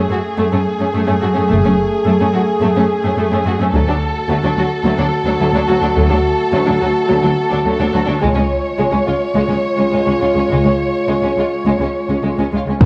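Heroic and relentless, this epic orchestral film-score passage at 107 BPM builds steadily over F#madd9, D and C#, with a close, portamento-laden studio violin section carrying the melody above a tight French horn section holding soft-attacked chords, a focused second violin line and a smooth viola accompaniment sitting in the background. Up front, an expressive cello section anchors the bass, joined at 1.5 seconds by woody double basses, all bathed in moderate scoring-stage reverb and the warbling pitch drift of worn cassette tape. At 12.8 seconds a huge, bright impact strikes just as the excerpt is cut off.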